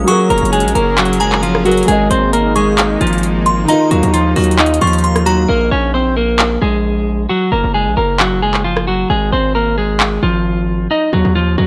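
A half-time trap groove sits under this short melancholic, menacing hip hop cut, driven by a booming analog drum machine with metallic hats, handclaps and rim clicks that carry a tape-warm, small-room grit up front. A distorted 808-style bass, heavy and saturated with a noise layer and fast-attack, decaying notes, runs beneath it for the whole 11.7 seconds. A dark, clean picked electric guitar carries the melody throughout, softened by a low-pass filter. For the first 5.5 seconds it is joined by a felt-muted upright piano with audible action noise in the background, a sweeping resonant sawtooth pad with a filter swell, slow attack and chorus, and a delicate, tinkling FM bell run through chorus, phaser, tremolo and delay. At 5.5 seconds those three drop out for a break in which guitar, bass and drums continue over Bbm, then Gbadd9, Absus2 and Ebmadd9 chords, with the drums stopping at 10.1 seconds, all set in a digital ambience.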